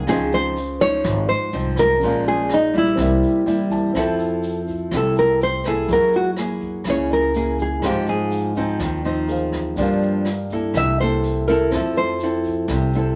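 A moderate studio reverb gives this short, sunny bossa nova cut a relaxed glow at 124 BPM, with a full-bodied, fingerpicked nylon-string guitar comping up front alongside a small-sounding nylon-string lead whose finger squeaks come through as it carries the melody and then takes a solo from 4.0 seconds. Beneath them, a woody, growly pizzicato upright bass anchors the harmony, while a natural-toned baby grand piano sits in the background and adds a brief fill at 3.2 seconds. A distant, roomy brush kit with a boomy kick, hi-hat and rim click joins a grainy, bright tube shaker at the back of the mix as the chords move from Dbmaj9 toward a closing Fmaj7.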